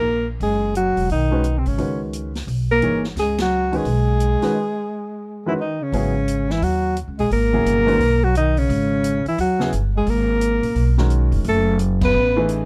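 Modal jazz excerpt at 174 BPM in a swung 4/4, cool and hypnotic, where a breathy alto saxophone with light vibrato carries the melody up front over a mellow bass clarinet second line, intimate baby grand piano chords with audible action noise, a woody, thumpy gut-string upright bass, and an acoustic drum kit with dark cymbals and a boomy kick set back in a small room, all captured in a dry, close 1970s-style studio sound, with band accents, a break at 4.5 seconds, and a move from Gbsus4 to G#m11 at 5.9 seconds before settling on F#m11.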